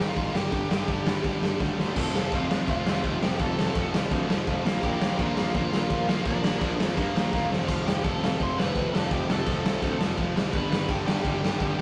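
A biting lead guitar, two overdriven rhythm guitars and a fuzz-soaked picked bass all start together in this upbeat, rowdy punk rock excerpt, with the raw garage drum kit joining at 0.2 seconds. The tempo is a fast, straight 168 BPM in 4/4. The lead guitar carries the melody high over a G5 opening, while the distorted electric guitar and the sludgy distorted guitar play bright, picked riffs beneath it. The growly bass sits in the background with the rest of the stringed parts. The drums sit up front, punchy in the kick, gritty and saturated, with a medium-tuned snare, crash, splash and hi-hat, and a rolled-off top. A drum fill at 1.6 seconds launches the main section at 2.0 seconds, where the chords move through F, Bb, F and G, and a second fill arrives later. Light reverb and a rough rehearsal-room sound give the whole track a scrappy immediacy.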